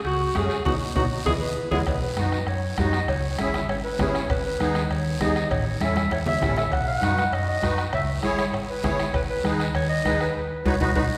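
A dark, round hollow-body electric bass opens this joyful, sunny cumbia at a brisk 198 BPM, alongside ringing congas, a raspy guiro and, further back, ringing metal-shell timbales and cowbell with a vintage, band-limited color. A mellow, up-front alto saxophone with vibrato and a smooth top states a brief pop-style phrase, while a reedy, shimmering musette accordion joins as the full, close-miked accompaniment and a soft-beater bombo thuds in the background. At 1.4 seconds a growling clarinet enters, and from 1.9 seconds it takes over as the solo voice, gritty and jazz-styled with scooped notes and vibrato. Drum fills and band accents punctuate the opening, another fill arrives near 5.8 seconds, and the harmony cycles through B, C#m, G#m and A before closing on B with a final accent. The whole is bathed in a wet hall reverb, and the clip is cut from a longer piece.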